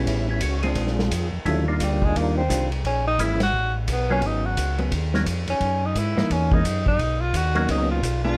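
A dry sound frames this brief slice of swinging, soulful soul jazz organ trio at 173 BPM. A mellow, lightly overdriven tonewheel organ carries the bass up front through a slow rotary speaker, while a second, percussive organ with third harmonic percussion states the melody, a dark, picked hollow-body guitar comps underneath, and a vintage kit with dark cymbals, punchy kick and a pumping small-room sound drives the swing. At 1.8 seconds a tenor saxophone enters for a solo full of vibrato and scooped notes, its tone roomy yet punchy, moving through rich chords like Ebmaj9, Abm11 and Gb13.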